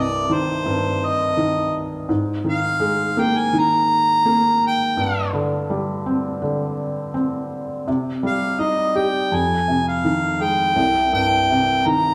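In a straight 4/4 pulse, this intimate, reflective acoustic folk-pop ballad fragment places a roomy, distant-sounding harmonica melody up front over a soft, felt-muted upright piano whose mellow accompaniment carries audible action noise, moving through Cm, Absus2, Gsus4, Cm and Fm7 back to Cm, the pair heard from further back in a large, reverberant studio.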